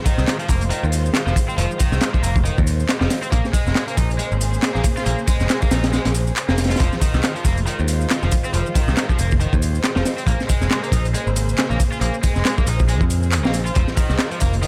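A swung 16th-note breakbeat groove at 138 BPM in 4/4 drives this energetic, gritty fragment in F minor, cut from a longer piece and tuned slightly below standard pitch. Up front sits a crunchy acoustic breakbeat kit, dark and saturated with a rolled-off top, a punchy kick and a high-tuned snare alongside its hi-hat. A quieter, tape-warm house kit layers handclaps, ride cymbal and shaker beneath it. A bright, growly picked electric bass with tube saturation holds the low end from 0.2 seconds, while a double-tracked, overdriven stack guitar plays a riff through digital delay. Behind them, a chamber string section bows sustained chords with light vibrato and a soft, intimate sul tasto tone, roughened by vintage 12-bit sampler grit and pumping against the sidechain as the harmony alternates between Fm7 and Bbm9. A small room reverb gives the mix a close, compact space.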